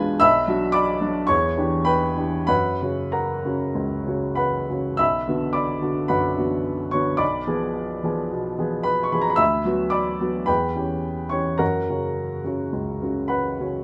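A clear baby grand piano carries this romantic character piece alone, its open, up-front sound ringing in light reverb across a range from B1 to E6. Set in B minor and 4/4, the music moves with a rubato feel somewhere between 92 and 114 BPM, and its mood is stormy yet bittersweet. The opening phrase passes through Bm, Em7 and F#, and a new section begins at 5.0 seconds, returning to Bm before moving to a Bdim7. Later harmonies include Bm/D and C#m7b5/E, and the passage arrives on F# at 11.6 seconds. It is a fragment of a longer piece, lasting about 13.8 seconds.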